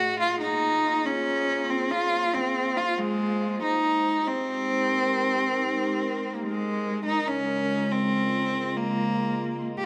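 IDM in free time and Db lydian, this short excerpt cut from a longer piece feels intricate and playful while floating in a huge ambient reverb. A single bowed cello carries the melody throughout, sitting up front with a nasal, boxy, focused tone, vibrato, and a touch of delay. Beneath it, a warbly tape-like pad holds sustained chords at a lower level, its detuned square and triangle waves giving a nostalgic, lo-fi, dark color with chorus, a slow attack and a long release. The harmony moves from Bb7sus2 to Abmaj7 at 3.6 seconds and settles on Db69 at 7.1 seconds. Both parts sound together from start to finish, the cello's warmth set against the hazy pad in a roomy, reverberant space.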